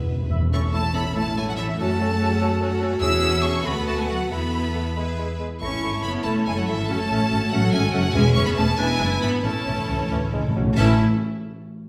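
A quick, graceful classical-period orchestral movement in a rubato 6/8 that sounds cheerful, cut from a longer piece. Close, expressive bowed violins carry the melody high above a background violin line, a distant viola section and a smooth cello section, while a dark double bass section with portamento anchors the bass, and dark, roomy French horns hold sustained chords. A pure flute group, a clear clarinet and a mellow solo bassoon add soft inner lines, and round, soft-mallet timpani play a fill at the opening and return from 8.1 seconds, all set in a reverberant recital hall.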